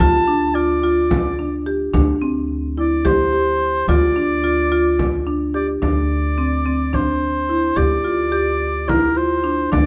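Counted in a straight 7/8 at 216 eighth-note beats per minute, this restless, pensive piece of contemporary chamber music in D minor is cut from a longer work and runs just under 10 seconds, tuned to A4 = 442 Hz. A mellow oboe carries the melody with light vibrato and a classical solo voice, sitting between Bb4 and A5. Beneath it, a marimba played with medium hard mallets spins percussive arpeggios on rosewood bars, its woody tone set up front in a boxy small room. A dark pizzicato upright bass on steel strings holds a low D, while a deep, large frame drum struck with hard hands rings in a live room. The harmony moves from Dm to D7sus4 and back, then shifts at 5.8 seconds to Csus2 and G5 over the same D bass. Close, detailed microphones and light reverb capture the ensemble, with a faint mains hum beneath.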